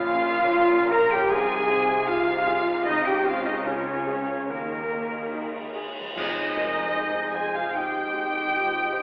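Heard from further back in a reverberant scoring stage with a narrow, telephone-like tone, this excerpt of a cinematic film score unfolds in F minor at a rubato 70-78 BPM in 4/4, its mood moving and bittersweet, tuned to A4 = 437 Hz. A muted, con sordino violin section carries the veiled, lush melody, while a second violin section, a bright silver flute with airy lifted highs, and a soft-attacked, roomy clarinet weave second lines. Muted viola, cello and double bass sections fill out the dark, vibrato-rich accompaniment and bass, joined by a clear, vintage-toned grand piano, a tight French horn section holding smooth sustained chords, and a very quiet, ringing fingerpicked harp playing arpeggios. The harmony moves through Bbm, Fm7/C, Dbmaj7 and Ebsus4 before settling on Fm7 and Ab. A cymbal swell with clash cymbals and concert bass drum adds shimmer from 2.9 s, and at 6.2 s a band accent coincides with the entry of a solo cor anglais, whose shadowy, lightly vibrato line brings a tender new colour to the close.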